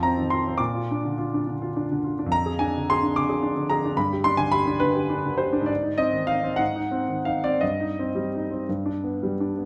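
A clear concert grand piano sits up front with a natural tone and deep bass, playing solo throughout this 9.7-second fragment of a longer romantic character piece in 6/8, moving with free rubato at 54-73 BPM in dotted quarters. The mood is passionate and stormy, the harmony passing through Bb, Ddim/F, G, Ab and Cm/G before settling on G. A moderate recital hall reverb gives the playing a sense of space.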